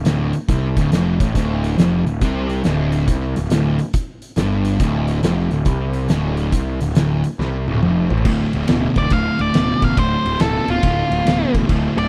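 Heavy and smoky, this short cut from a longer piece is blues rock in the power-trio mould with a southern rock streak, riding a swung 139 BPM in 4/4 around D minor. A double-tracked fuzz guitar grinds out a low riff from the start, with a growly, overdriven picked bass an octave beneath that sounds bright and direct. An oversized, low-tuned drum kit sits up front with a fat snare, punchy kick, crashes, hi-hat, ride and toms, its tone dark and saturated yet smooth, set in a bright stone room. A drum fill at 7.4 seconds leads into a solo at 8.3 seconds, and a dark octave-fuzz lead guitar enters at 9.0 seconds, ranging between F4 and F5. The mix is dry and close, with the feel of a 1970s studio.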